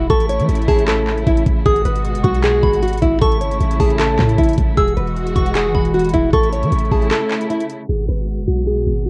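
A dark, menacing half-time trap excerpt at 154 BPM in G# phrygian opens with a fingerpicked nylon-string guitar melody, dusky and up front with audible finger squeak, over a soft FM bell line colored by chorus, phaser and tape echo, lush bowed strings with vibrato, and a deep, boomy sine 808 bass. A trap kit with a knocking kick, bright hats and handclaps enters at 0.1 s, its overdriven hits carrying the same cassette grit as the guitar, bell and strings. The bell drops out at 7.1 s and the drums at 7.8 s, leaving guitar, strings and bass in a closing filter sweep over a G#m7 chord.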